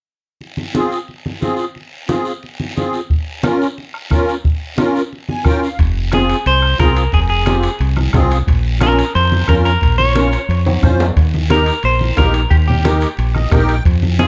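A fiery, passionate cumbia in F minor opens with low-tuned, ringing congas and a raspy guiro, joined almost at once by a reedy, shimmering musette accordion that plays close and dry up front, moving from Fm to Bbm. At a brisk 178 BPM in a straight 4/4, a soft-beatered bombo enters at 3.1 seconds, and the accordion adds a short fill just before the band fills out. At 5.8 seconds a round, dark fingered electric bass arrives up front alongside timbales sitting in the background, and a bright, twangy clean electric guitar takes the melody moments later, coloured by spring reverb and slapback echo. The chords cycle back through Fm and Bbm before landing on Eb, with a drum fill marking the turn and another accordion fill near the close. The production is dark and warm with a light reverb, and this excerpt is cut from a longer piece.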